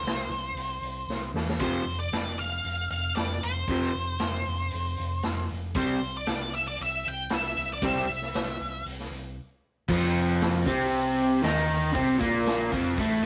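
Garage rock excerpt with a raw, rowdy mood, driven by a vintage acoustic drum kit with a punchy kick, dark cymbals and a rolled-off top, an overdriven fingered electric bass that sounds round and amped, and a jingly tambourine sitting in the background. A dark, fuzzy octave-fuzz lead guitar carries the melody up front until 8.8 s, while a crunchy, double-tracked overdriven guitar riff enters at 1.6 s after a drum fill and stays prominent to the end. A brief break precedes a new section at 9.9 s, all captured in a rough rehearsal-room recording with tube saturation and moderate reverb.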